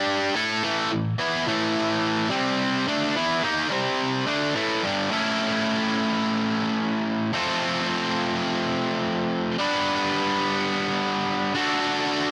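A lone distorted electric guitar opens this swaggering rock fragment, alternating power chords on A5 and C5 through its first 5.1 seconds at a straight 107 BPM in 4/4. The guitar is bright and picked, its overdriven tone double-tracked and placed up front, spanning from G2 to B4. At 5.1 seconds the part moves into a second passage built on A, F, G and D, closing on D at 11.5 seconds before the fragment ends at 12.3 seconds. The mood is confident throughout, carried entirely by this single guitar. A light reverb lends a digital ambience to the sound, and the tuning sits slightly above standard pitch.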